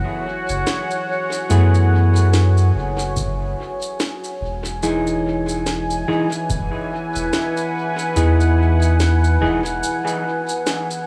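A slow 72 BPM ambient dub groove in 4/4 swings its 16ths, with an electronic shaker and a woody, tape-warm snare soaked in dub echo, while a deep analog kick sits in the background for part of the passage. A round, soft sub bass sits up front beneath a moody, evolving pad of detuned sawtooth unison with chorus and reverb, moving from F#m11 to Emaj7 at 4.8 seconds in a spacious, hazy mood. A dark, clean semi-hollow electric guitar adds stabs coated in gritty 12-bit sampler texture and dub echo, and the bass stops at 9.8 seconds for a brief break in this cut from a longer piece.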